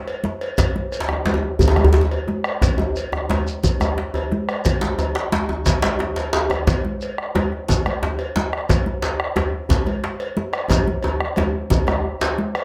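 Close, detailed microphones and light reverb give this short cut from a longer West African drum ensemble piece a vivid, present sound, powerful and festive at 119 BPM in a straight 12/8. A metallic cowbell opens at 0.1 s, quickly joined by ringing, high-tuned congas, a tight djembe in the background, a deep, dark bombo and a grainy, mellow, compressed shekere. A second, cracking djembe enters up front at 1.0 s as the loudest voice, and a drum fill drives the final stretch from 10.7 s to the end.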